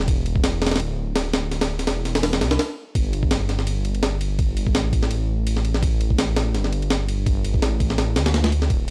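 Drum and bass in a jungle vein, dark and frenetic at 167 BPM with a light swing on the sixteenths, this excerpt runs a drop across its full 8.9 seconds. A pitched-up, compressed breakbeat kit sits up front with a thumpy kick, a medium-tuned snare and ride cymbal, while a detuned sawtooth bass rumbles between D1 and D2, its beating tone thickened by tube saturation. The sound is dry and gritty, with little room around either part.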